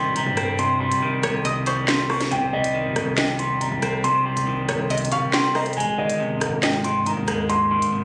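A dark, boxy grand piano melody with audible action noise and tape echo opens this cold, menacing drill excerpt at 139 BPM in half-time C phrygian, joined at once by a twangy, warbling resonator pluck with chorus and phaser, a slightly broken-up picked electric guitar up front, and a punchy sine 808 bass in the background, while a barely audible electronic impact lands at 0.1 seconds just before the gritty, up-front drum kit of sharp snare, crisp hats, handclaps and rim clicks enters at 0.2 seconds, all over a Cm chord that shifts to Ab at 5.8 seconds, captured on a phone in a room with club reverb and compression.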